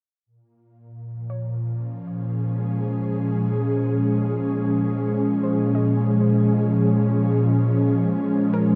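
A melancholic, spacious ambient passage in free time, cut from a longer piece, opens with an ethereal, airy synth pad holding mellow, detuned chords up front under ensemble chorus at 1.0 s, before a soft, round, dark pluck fades in with gentle tape-echoed arpeggios in the background from 1.3 s, all bathed in a huge, wet reverb that lingers for seconds.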